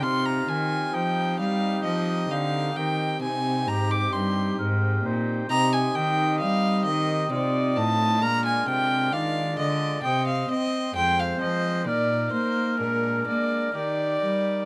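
An unhurried, straight triple metre carries this short baroque-style sonata movement, taken from a longer piece, and its mood is serene and radiant. A solo violin leads the melody up front, its gut-string tone and airy bowing giving the line a period flavour with a slightly reedy edge. Beneath it, an oboe with light vibrato sings a second line that sounds more distant and roomy. A pipe organ's nasal cornet solo stop fills in the continuo harmony, while a single bowed cello anchors the bass with a rich, gut-strung voice. The harmony turns from a minor opening toward a brighter major colour, and all four parts play together from the start to about 14.7 s, captured with close, detailed microphones and a light reverb.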